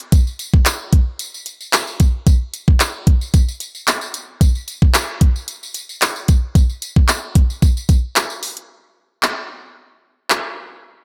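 Summery and carefree, this pop clip moves at 112 BPM in a straight 4/4 feel, cut from a longer piece. It opens on a drop that runs to 8.7 s, driven by an electronic pop drum kit of handclaps, hi-hat and a knocking kick, layered and produced, with overdrive giving it a gritty edge. The kit sits up front in the mix, its sound re-recorded in a small room, and it carries on until 10.4 s. A close, jingly acoustic tambourine rides quietly beneath it, stopping at 8.6 s just before the music shifts into a new section. The overall sound is dry, with very little reverb.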